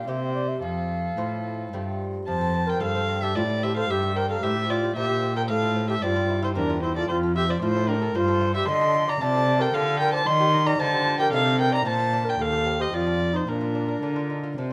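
A dark, nasal gut-string violin carries the melody from the first moment over a pure, soft-attacked wooden baroque flute with vibrato, a delicate fingerpicked lute with double strings, and a rich, reedy cello bass in this radiant, serene baroque-style sonata movement with continuo, played at 112 BPM in 3/4 in period style in a moderate recital hall with close, detailed microphones, moving from F major into Bb major at 8.7 seconds before it is cut from a longer piece.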